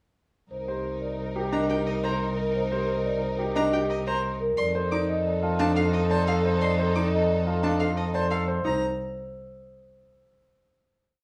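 Pulsing in a straight 6/4 at 177 BPM, this short, complete classical piece of minimalist pattern music in C dorian feels urgent and hypnotic, circling from Cm7 to F7 and back before settling on a held final chord at 8.7 seconds. From 0.5 seconds, a mellow, round marimba played with soft mallets carries the melody as a repeated short cell with a slightly vintage tone. Beneath it, a bowed solo double bass sits up front with long, rich, even low notes, while a lush, distant violin section adds sustained chords in swelling held notes. A warm French horn in the background supplies a second line, also in swelling held notes. A polished, present concert grand piano and, from 1.5 seconds, a close solo violin with vibrato each add arpeggios built on repeated short cells. A light studio reverb gives the ensemble a gentle sense of space.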